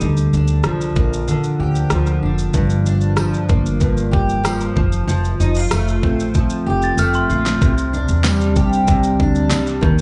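A double-tracked, fingerpicked steel-string acoustic guitar sits up front with a full-bodied, fresh-stringed jumbo tone, carrying this carefree, easy-going acoustic pop fragment over a woody, dark pizzicato upright bass and a produced, layered electronic pop kit with a knocking kick, fat snare, rim click and shaker. A close, jingly tambourine sits in the background from 3.2 seconds, and during a drum fill a soft, bell-like glockenspiel played with rubber mallets rings out briefly at 6.8 seconds with a slapback echo, as the chords move from Bb6 through Gm7 and Fadd9 to Cadd9. The sound has the light small-room reverb and club ambience of a live gig heard through the venue's PA, with a rolled-off top end.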